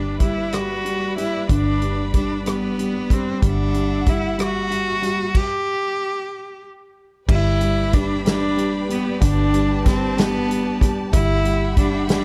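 Romantic and tender, this six-eight pop ballad in G major drifts at 62 BPM as a clear, focused solo cello sings the bowed, vibrato-rich melody up front over an intimate baby grand piano with audible action noise, a lush, bright string section holding sustained chords, a round, foam-muted vintage electric bass on G, and a punchy, natural country drum kit entering at 0.2 seconds, all moving between G and Emadd9/G chords in a dark, small-room production with a stop from 5.4 to 7.3 seconds.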